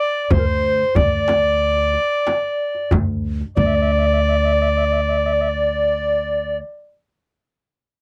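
A short, melancholic and soulful cut from a Turkish makam ensemble piece opens with a bright, reedy alto recorder carrying the melody, its tongued notes and chiff sitting close and up front. Beneath it, a dark, very quiet clarinet plays a classical-style second line. At 0.3 seconds a woody, thumpy pizzicato upright bass enters up front, joined in the background by a crisp, deep metal-shelled darbuka and a close, dry frame drum. The two drums stop at 3.9 seconds as the music moves into a new section, leaving the winds and bass, with the clarinet holding on alone until 7.0 seconds. The steady 4/4 feel and light reverb on a dry, close 1970s-style studio sound give the fragment an intimate, vintage character.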